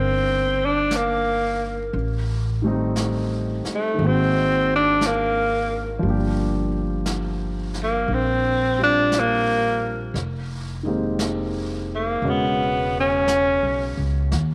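Bathed in a wet spring reverb, this wistful, smoky jazz ballad excerpt drifts at 58 BPM with a lazy swing, as an up-front, breathy tenor saxophone sings the melody with vibrato and scooped notes over an intimate, vintage-toned grand piano with audible action noise, a woody pizzicato upright bass, and a brushed drum kit that sits low in the mix and joins at 0.9 s, all moving through a chord sequence that opens on Cm9 and closes on E69.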